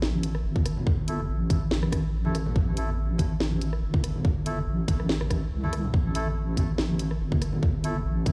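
Heavy and meditative, this short cut from a longer deep dubstep piece moves at 142 BPM in a half-time 4/4 feel with a light swing on the sixteenths, set in A minor over an A5 chord. A deep, soft wobble bass sits up front from the start, its dark square-and-sine tone compressed and sustained with a fast attack and a chorus sheen, ranging from G1 to C2. A garage drum kit of hi-hat, rim click and cracking snare runs throughout, joined at 0.6 seconds by a tight, layered electronic kick that stands forward in the mix. Bright congas sit distant in the background, trailing dub echo. From 1.1 seconds a reedy, breathy melodica plays quiet stabs between A3 and A4, passed through a low-pass filter that sweeps across the passage and thrown into dub echo. The whole track sounds as if played on a big sound system in a bare room, wrapped in large studio reverb.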